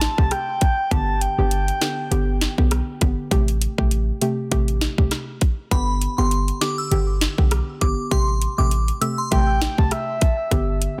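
A breathy, flute-like synth lead opens this sultry, bouncy dancehall excerpt at 100 BPM in A minor. Beneath it sit an overdriven island pop drum kit with a tight kick, sharp snare and metallic hats, a deep, boomy 808-style bass, and a soft, round pluck with chorus, all moving between Am7 and G with a light 16th-note swing. The lead stops at 2.5 seconds, a glassy FM bell with chorus, phaser and delay carries the melody from 5.7 to 9.3 seconds, and then the flute-like line returns with chorus and delay over a dense, heavily limited mix in which the drums and bass sit up front amid digital ambience.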